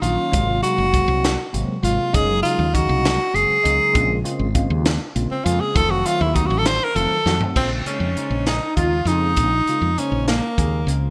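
Electric jazz fusion in Bb minor at 66 BPM in a straight 6/8, funky and nocturnal, with a breathy, close-miked tenor saxophone soloing up front with scooped notes over bell-like electric piano with phaser, a round, punchy fretless bass and a crisp drum kit with a high-tuned snare, tight kick and gated reverb, moving through Ab13, Gb69, Bbm9 and F7b9 until a drum fill at 7.3 seconds leads to a dark, clean hollow-body jazz guitar entering in the background at 7.6 seconds, all in a bright 1980s-style digital production with a small room ambience, cut from a longer piece.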